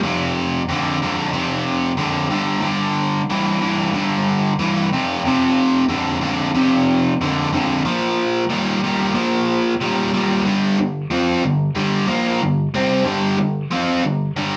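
A moderate studio reverb gives this short rock excerpt the feel of a band playing live in one room. A biting, overdriven electric guitar, picked and double-tracked, sits up front with a warm edge, spanning F2 to F4 as it moves through F5, G5 and Bb5 power chords at a straight 92 BPM in 4/4. The mood is swaggering and confident, and at 10.5 seconds the part shifts to a new section on G5 that carries through to 14.6 seconds.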